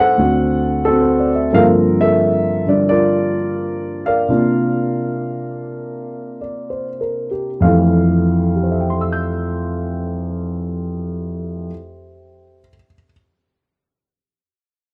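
Swung eighths in 4/4 drift with a rubato feel, easing back between 1.5 and 7.6 seconds, as a solo jazz piano passage moves through D7, Gm11 and C9sus4 before settling on Fmaj7 at 7.6 seconds. The concert grand alone carries this relaxed fragment of a longer piece, its dark, mellow tone and deep bass sitting up front. The small room gives a dry, close, 1970s-style studio sound.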